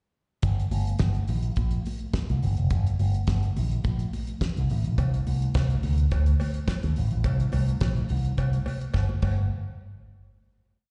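This is a danceable, glamorous disco piece in G minor at 106 BPM, with a straight 4/4 groove that starts at 0.4 seconds. A dry, damped 70s drum kit sits up front, playing a four-on-the-floor disco beat with a tight kick, a fat snare, open hi-hats on the off-beats and a crash cymbal. Beside it, a warm, amped picked electric bass runs a syncopated disco line through an envelope filter in its low register. Bright, high-tuned congas with thin skins and hard hands play a syncopated groove in the background, carrying a slapback echo. A metallic cowbell joins at 5.0 seconds with quarter notes, also with slapback echo, and a short drum fill leads into a final hit at 9.5 seconds. The whole piece sounds like a live gig heard through the venue's PA, set in recital hall reverb with a dulled top end.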